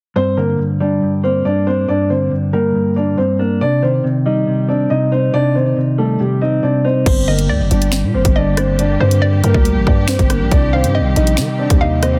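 A dark, boxy concert grand piano leads this tense, ominous drill excerpt, its melody softened by a low-pass filter and trailed by digital delay. From the opening, a clean, fingered electric guitar, compressed and filtered, shares the front of the mix with accompaniment as the harmony moves between G minor and C minor over a half-time feel. At 7.1 seconds the track opens up: a hard-clipped kick, sharp snare, bright hi-hats, rim clicks, finger snaps and a crash cymbal arrive, joined by a growling, buzzy 808-style bass with a fast attack and decaying tail. Muted, con sordino strings enter at the same moment, holding veiled, bowed chords with vibrato and a soft attack far back in the mix. A hollow, bouncy square-wave pluck follows shortly after, its warbling, detuned tone coloured by chorus and delay as a second line above. The dense, heavily limited master sits in a digital ambience that keeps the mood claustrophobic and menacing.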